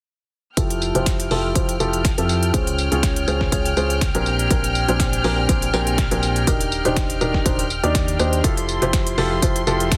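A woody, up-front upright piano carries the riff in this euphoric, uplifting piano house excerpt, its low-pass filtered and delayed lines pumping against the kick under a filter sweep through Fmaj9, Dbmaj7, Bb69 and Ebmaj7. A hollow, dark, organ-like FM bass with tube saturation follows its own filter sweep, while a smooth studio violin section holds high bowed chords with light vibrato. A punchy electronic kick, crisp electronic hats and a gritty sampler-style kit of hi-hat, fat snare and tambourine drive the swung groove, all squeezed into a heavily compressed, radio-like sound with light reverb.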